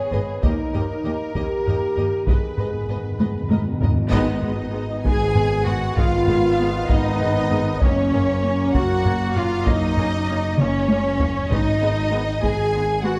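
Drenched in a wet scoring-stage reverb, this dramatic, heroic excerpt of epic orchestral film score moves at 65 BPM in 6/8 in G# dorian, with a lush, smooth symphonic violin melody over a distant, focused second violin line, expressive viola accompaniment with portamento, rich cello and double bass anchoring the bass, background chords from soft-attack French horns and bright, loose trombones, heavy-stick taiko driving throughout, and round soft-mallet timpani entering at 0.4 seconds with a fill from 2.3 seconds before a full-ensemble accent at 4.1 seconds launches the second section.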